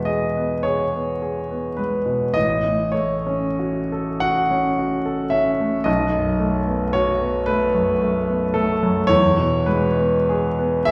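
A solo concert grand piano opens this serene, nostalgic romantic nocturne in E major, unfolding in a slow, rubato 6/8 at around 31-38 dotted-quarter beats per minute. The piano sits up front with a deep bass, long sustain and audible action noise, ranging from A1 to F#5 as the harmony moves from E through F#m/A to B7 at 5.9 seconds and settles back on E at 9.1 seconds. A wet recital hall reverb places the listener further back in the room, and the 10.9-second passage is cut from a longer piece.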